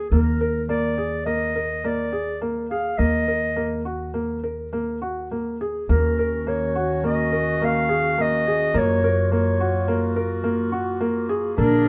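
Contemporary chamber music in an uneven 5/4 at 104 BPM, this Eb minor excerpt feels urgent yet pensive, with a mellow, roomy clarinet carrying the melody over soft arpeggios from a felt-muted upright piano and a woody, thumpy pizzicato upright bass. At 5.9 seconds a woodwind section enters with smooth, tight sustained chords as the harmony moves from Ebm7 to Gbmaj7, and a bowed cello with vibrato adds a dark second line just at 11.6 seconds before the cut. Close, detailed microphones and light reverb keep the piano intimate and up front.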